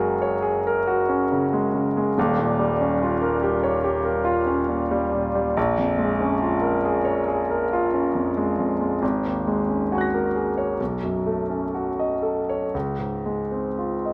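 Dreamy and serene, this short impressionist solo piano passage drifts in a gently elastic rubato, taken from a longer classical piece. A concert grand carries everything alone, its intimate, polished tone sitting up front with deep bass reaching down to Eb1 and a range extending up to Bb6. The sound of the instrument's action is audible, lending a close, present quality to the playing. Lush extended harmonies glide from F#add9 through Eb9, Bbm7 and Ab9sus4 before settling on Cb9 and then Dbmaj7 near 12.7 seconds. A moderate recital hall reverb surrounds the piano, giving the 14.1-second excerpt a soft, floating sense of space.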